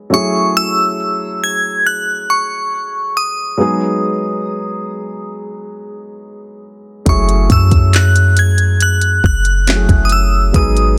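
A warm grand piano opens this short cut from a longer contemporary R&B piece, laying down an accompaniment with a short sustain at a slow 69 BPM in straight 4/4, in F# dorian. Almost at once a glassy, crystalline FM synth bell takes the melody high above it, its bright, fast-attack notes decaying into a long release and coloured by chorus and phaser, sitting up front in the mix. The harmony moves from F#m7 to G#m7 and back, giving the passage a longing, sensual mood. At 7.1 seconds a clean 808-style bass arrives, deep, boomy and dark with a sine-like tone, a fast attack and a decaying sound, alongside a smooth electronic drum kit of soft kick, crisp hi-hat and handclaps. The sound is dry and close, with a dense, heavily limited modern master that keeps the bass and bell prominent through to the end at 11.0 seconds.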